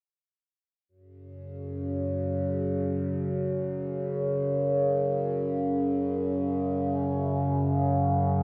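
The recording sits in a wet echo chamber with a 2.8-second reverb tail, and the echo-heavy mix tops out at 7.9 kHz, giving it a dim, cavernous cast. This brief ambient fragment, cut from a longer piece, moves in free time and is tuned to A4 = 444 Hz, with a desolate mood throughout. A single overtone-sweeping drone enters at 1.4 seconds and carries the music alone until 8.4 seconds, held low between F#2 and C#3 over an F#5 chord. Its sawtooth and sine tones are wave-folded into a resonant sound with moving overtones, a slow attack, long sustain and long release. Placed up front, the drone is coloured by chorus, its own reverb, phaser and tape echo, which blur its edges into the surrounding space.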